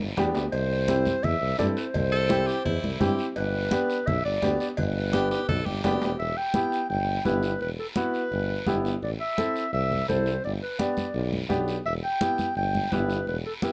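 A straight 4/4 cumbia groove at 170 BPM drives this danceable, passionate latin excerpt in E minor, cut from a longer piece. Thick-skinned, medium-tuned congas played with soft hands sit beside a raspy, saturated guiro, while ringing metal cowbell and timbales stay very quiet in the first half. An up-front tuba anchors the bass with a pop-style solo voice, and a woody upright piano, also up front, fills in the accompaniment over chords that shift from G and C to Em and Am after 6.2 seconds. A mellow, classical-style clarinet carries the melody, joined from 2.1 seconds by an edgy, forceful tenor saxophone with vibrato and scooped notes, which stops at 6.2 seconds as a drum fill closes the first section. The close, detailed sound has little reverb, giving each part a dry, present feel.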